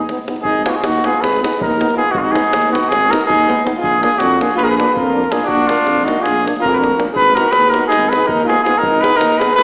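A wet, reverberant hall sound with a small-speaker character frames this restless, fiery Balkan brass band excerpt, cut from a longer piece and driving along at 322 eighth-note beats per minute in a straight 9/8. The mellow trumpet carries the melody up front, its tone touched by light vibrato yet sounding distant and roomy, while a warm alto saxophone with a smooth top and its own vibrato shadows it on a second line. Underneath, a clear, close-miked trombone sits very quiet in the accompaniment beside a euphonium placed further back in the room, and a soft-attacked tuba anchors the bass from 0.4 seconds. A deep, acoustic davul, heard close and dry, pushes the odd-metre pulse throughout. All the horns are played in a classical style, and the harmony in Ab dorian with a raised fourth moves from Abm to Bb at 3.8 seconds and back to Abm at 7.2 seconds.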